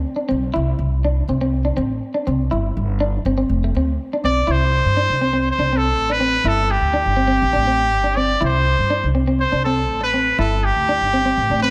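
A woody, thumpy gut-string upright bass opens this danceable highlife guitar band fragment, joined at 0.2 s by a dark, clean picked electric guitar moving through Csus2, G5, F5 and Am, before a bright, roomy trumpet with light vibrato takes up a pop-style solo melody at 4.2 s, set up front yet distant within a moderate spring reverb.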